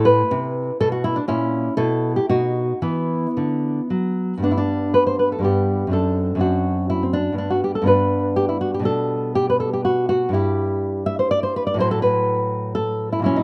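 Recorded outdoors and very dry, this 13.4-second passage cut from a longer piece places a dark, full-bodied nylon-string guitar up front, with a touch of slapback echo on the instrument. The classical player fingerpicks a radiant, dance-like baroque-style piece in 3/4 at 109-128 BPM, handled with a rubato feel and spanning F#2 to E5. It opens in E minor over chords such as Amadd9, A#dim and B, then settles into G major at 4.4 s, passing through G/B and Em/G before closing on Asus2.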